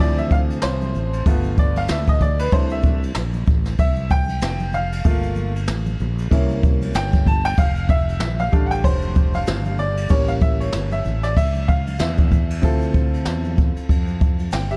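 A bright, woody upright piano takes the lead in this cool, nocturnal jazz-hop excerpt, soloing from the start until 12.6 seconds across a range from E3 to A5, its slightly detuned, brilliant tone sitting open in the mix. Underneath, a growly fretless electric bass sits up front, holding the low end between F1 and F2. A jazz kit played with brushes is the loudest part, with a boomy kick, a medium-tuned snare, dark cymbals on hi-hat and ride, and a natural small-room sound. Very quiet tube shaker and congas, played with soft hands and a vintage, band-limited tone, enter at 0.2 seconds. The groove moves at 95 BPM in 4/4 with a 59% swing on the sixteenths, cycling through jazzy D minor changes such as Dm7, G9, C6, Gm9, C7b9, F69 and A7b9 before arriving on Dm9 as a new section begins at 12.6 seconds. Studio reverb and a dark, warm production give the whole piece a late-night glow.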